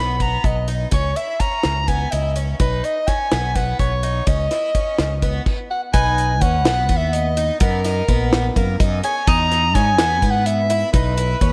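Intricate and driving, this progressive instrumental band piece moves in an uneven 7/8 meter with a straight feel, cut from a longer work. A clear, punchy soprano saxophone carries the melody up front with vibrato and a slapback echo, over a bright, shimmering, octave-doubled twelve-string acoustic guitar picking arpeggios in a boxy parlour tone. A round fretless electric bass sits forward with a subtle chorus, while a deep reggae drum kit with a high-tuned snare, tight kick, hi-hat and crash sounds dry, dark and rolled-off. After a stop at 5.5 seconds, a clean electric guitar enters in the background at 5.9 seconds with a second line, its lush chorus and slapback echo adding to the moving harmony of major-seventh chords. A lush hall reverb and small room ambience give the whole recording a big arena sound.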